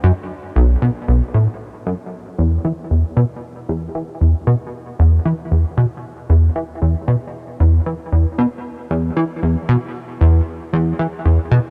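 A cassette tape sheen and a light reverb frame this short ambient fragment, cut from a longer piece, in a hypnotic, mysterious mood with a straight feel in 4/4. A plucky analog bass carries it alone from start to finish, sitting up front in the mix across a range from B1 to E3. Its tone blends sawtooth, pulse wave and sine, shaped by a filter pluck with a fast attack and a decaying tail that gives each note a punchy, funky bite. Lush chorus and analog delay surround the bass, adding a shimmering haze to its notes. A brief opening passage gives way at 2.1 seconds to a longer stretch that runs until the fragment ends at 11.7 seconds.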